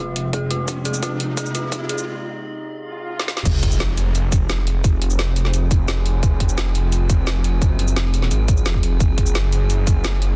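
A thick, saturated detuned saw bass sits up front in this aggressive, futuristic dark technical drum and bass cut, driven by a tight, layered electronic kick and a small-room kit of woody snare, metallic hats, shaker and crash, while an eerie, warbling FM drone sustains chords under chorus and phaser, a decaying inharmonic synth bell plays arpeggios through the opening 2.0 seconds, and a background riser, swell and sub drop carry the build-up and break until the drop lands at 3.5 seconds in a dense, heavily limited mix with light digital ambience.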